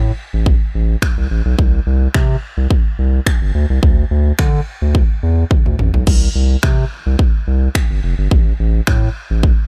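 A deep, thick, saturated sine sub bass pumps under sidechain from the start of this summery, carefree dance-pop clip cut from a longer piece, joined at 0.5 s by a punchy, layered electronic drum kit of kick, finger snaps, toms and crash cymbal that breaks into a fill at 5.5 s, with both parts up front in a dry, close mix.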